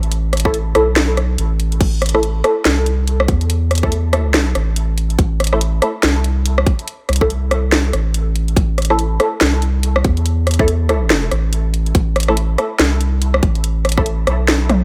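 A round, deep sub bass and an overdriven garage drum kit open this brooding, meditative slice of deep dubstep, cut from a longer piece. The bass, a soft blend of triangle and square wave with a fast attack and sustained notes, sits up front in the low register, while the kit brings a cracking snare, hi-hat, rim clicks, toms and crash cymbal inside a small room ambience. At 0.5 seconds a tight, layered electronic kick and a filtered dub chord stab join. The muted, mellow stabs use detuned sawtooth and square tones with a plucky filter and short decay, coloured by phaser, ensemble chorus and dub echo. The groove moves at 142 BPM in 4/4 with a half-time feel and 60% swing on the 16ths, holding a single A5 chord in A minor. Light reverb and digital ambience surround the whole passage, and the stabs and kick fall away at 14.0 seconds.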